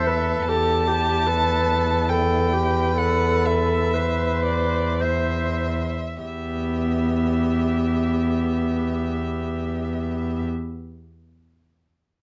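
A dark, softly reverberant recording catches a brief passage of a slow, elegiac romantic movement for muted string quartet in E minor, its rubato 3/4 pulse yearning between 48 and 76 BPM and slowing through the first 6.2 seconds, as a close, veiled first violin sings the melody with vibrato over a more distant second violin line and a smooth-topped viola accompaniment, while an up-front cello holds a low E with portamento beneath harmonies moving from Em to Am/E and back at 6.2 seconds.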